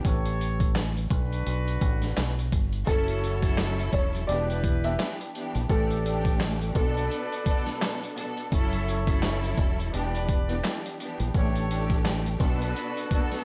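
Gritty, pitched-down sampler drums with a thumpy kick, snare, hi-hat and handclaps drive this reflective, moody boom-bap hip hop in B minor at 85 BPM with a swung feel, over a round, punchy fingered electric bass, lush bowed strings with expressive portamento softened by a cassette-tape haze, smooth jazz-style horn stabs trailing tape echo, and very quiet dry finger snaps, while a dark, woody upright piano carries the melody from 2.9 to 8.5 seconds amid small-room vinyl crackle.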